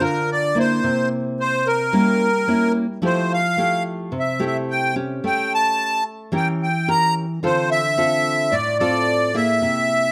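A straight 4/4 bossa nova pulse at 109 BPM carries this wistful, melancholic D minor fragment, where a sweet, reedy accordion with light tremolo tuning sings the melody close-miked and up front while a full-bodied, fingerpicked nylon-string guitar with a deep classical tone accompanies through a rootless Gm7, C7b9, Fmaj9, A7b9 and Dm7, heard within a moderate large-studio reverb.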